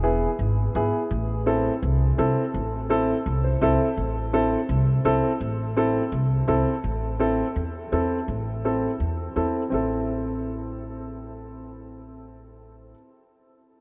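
An upright piano and a pizzicato upright bass open together in a driving, fiery cumbia at 167 BPM in A harmonic minor, the piano accompanying in a warm, woody tone over the bass's dark, thumpy steel-string pulse as the harmony moves from E to Am at 1.1 seconds. Both sit up front, the piano slipping in a brief fill at 3.3 seconds before the piece passes through three short sections. A huge, wet reverb places the pair in a vast, echoing space with muted upper frequencies, and the clip is cut from a longer piece.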